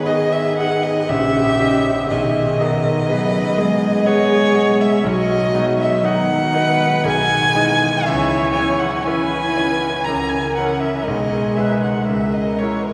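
Elegiac and melancholic, this slow romantic movement for piano quartet moves in a rubato 3/4 at 60 BPM in G# minor, cut from a longer piece and bathed in the long, wet reverb of a church or concert hall. A dark, woody violin sings the melody up front with vibrato and sul tasto bowing, while the cello carries a second line and a nasal, smooth-topped viola plays in the accompaniment, both also bowed sul tasto with vibrato. A bright, brilliant concert grand with deep bass fills out the harmony as the chords pass from G#m through D#7/A# and B to C#m, closing on an A#m7b5/C# at 12.1 seconds.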